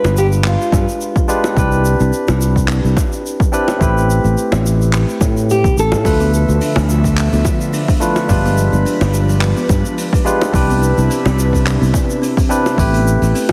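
Sunset chillout with a relaxed, smooth mood and a light swing, cut from a longer piece. A growly, punchy fretless electric bass sits up front beneath a barky, clean tine electric piano carrying the accompaniment with tape echo, while a punchy, layered electronic kick, a natural brushed jazz kit with handclaps, hi-hat and shaker, and tight, high-tuned bongos in the background keep the groove. A bright, fingerpicked nylon-string guitar with audible finger squeak offers brief melodic phrases at the opening and again midway, touched by tape echo. At 6.0 seconds an airy, breathy pad with a slow attack and chorus spreads sustained chords, and at 6.2 seconds a woody, hollow kalimba joins in the background with ringing thumb-plucked arpeggios. The harmony moves through G7b9, Cmaj7, Am9 and Dm69, and the whole mix has a heavily compressed, radio-like sound set in a moderate recital hall reverb.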